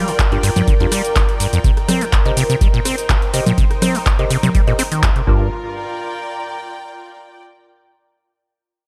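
Bathed in light reverb, this gritty, trippy acid house cut opens straight into a drop, built on a deep, overdriven analog kick with a large-room character and an up-front drum machine of congas, handclaps, metallic hi-hats, rim clicks and shaker. A squelchy, resonant sawtooth acid bass riff with overdrive, tape echo and filter sweeps drives the groove over Gm7 and Cm7. Clean tine electric piano stabs with tape echo, a warbling, detuned lo-fi pad pumping behind it through chorus and phaser, and a biting, earthy bowed string section with light vibrato fill out the texture, and the strings carry on alone from 5.5 s until 7.4 s.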